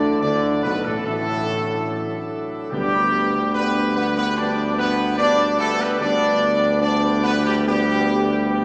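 A clear trumpet section with light vibrato carries a regal, solemn classical melody up front, over warm French horns and smooth-topped trombones in the background, a mellow, distant tuba on the bass, a very quiet brilliant plenum organ with chiff, and close, dry hard-mallet timpani that stop at 3.9 seconds, all bathed in a wet church reverb.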